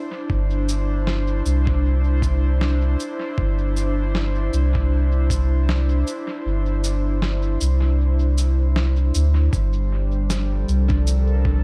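Meditative and hazy, this ambient dub fragment at 78 BPM with a lightly swung 4/4 floats an airy, breathy chorused pad over a round, up-front sub bass and a muffled, thumpy background kick that drops out from 6.5 to 9.5 seconds, while pitched-down cabasa and snare carry dub echo, the harmony shifts from Cadd9/G to Gm9 at 9.5 seconds, and a ringing steel handpan arpeggio slips in at 10.9 seconds within an echo-heavy digital ambience.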